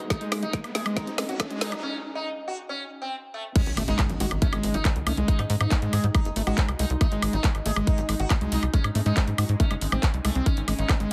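Heavily compressed and thin like a radio broadcast, with light reverb, this excerpt of driving, psychedelic trance at 139 BPM in G# major opens with a build-up where a riser, a drum fill and a filter sweep on the squelchy, screaming distorted acid riff lead to a short break. The drop lands at 3.6 seconds with a background impact, and the tight, punchy sequencer bass enters at 3.7 seconds beneath a layered, up-front electronic kick and a kit of woody snare, bright hi-hats, crash, handclaps and woodblock. Over this, a buzzing, shimmering plectrum-plucked sitar carries the melody through phaser, tape echo and sidechain pumping, while a very quiet bubbling, detuned texture sustains chords underneath.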